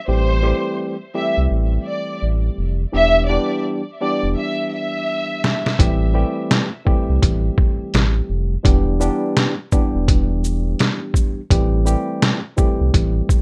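Reflective and moody, this boom-bap hip-hop excerpt moves at 84 BPM with a swung 16th feel, alternating Am7 and Em7 over a worn, slightly out-of-tune tine electric piano that sounds as if played through built-in speakers with a cassette-tape tint, and a deep, full sub bass with octave. A lush, bowed violin section carries the melody through tape echo until 5.8 seconds, while a gritty, pitched-down sampler-style drum kit with a thumpy kick, medium-tuned snare, hi-hat and shaker arrives at 5.4 seconds. Light reverb and a rough home demo mix give the whole piece an intimate, unpolished character.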